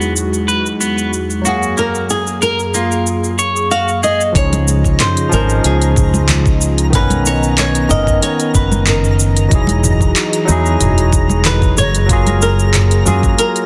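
A fingerpicked flamenco guitar carries the melody from 1.5 s, its acoustic tone full of finger squeak and trailed by delay, in this relaxed sunset chillout excerpt in Db major at 93 BPM with a gentle 16th-note swing. Underneath, a barky tine electric piano plays bright, clean accompaniment through a combo amp with delay, while an airy, breathy pad holds soft, slow-attack chords thickened by chorus. A bright, picked clean electric guitar adds delayed arpeggios until 4.2 s. A deep house drum kit runs throughout with smooth hats, handclaps, shaker and toms. From about 4.4 s the groove fills out with a knocking, tape-warm electronic kick, a round, dark fretless bass sitting up front with lush chorus, high-tuned congas struck with hard hands in the background, and a faint twinkling granular shimmer. Light reverb and a dense, heavily limited modern master give the whole a polished, mellow glow over lush major-ninth harmony.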